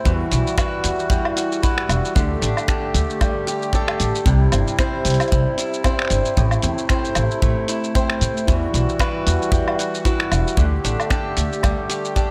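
A woody, thumpy pizzicato upright bass and a punchy, airy kick anchor this wistful, autumnal folktronica excerpt, where a boxy picked swing-style acoustic guitar spins arpeggios through tape echo, a reedy, sweet accordion with light tremolo tuning and vintage 12-bit sampler grit holds close, dry chords, and a muffled, pitched-down sampler kit of finger snaps, hi-hat, shaker and woodblock sits in a small room over a swung groove moving from Emadd9 through Gsus2, C and Am.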